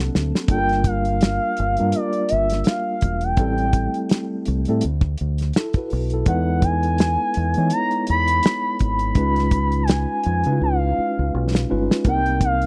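A gliding, detuned synth lead with a soft attack, chorus and vibrato carries the melody up front in this smooth, soulful neo-soul R&B piece at 83 BPM, swung on the sixteenths. A mellow tine electric piano plays chords such as Gm7, Bmadd11, Emaj7 and C#9 over a deep, round fingered electric bass and a cloth-damped, thuddy drum kit with a tight kick; the drums enter with a short fill at 0.2 seconds and fill again from 10.6 seconds. The sound is dry and close, like a 1970s studio recording.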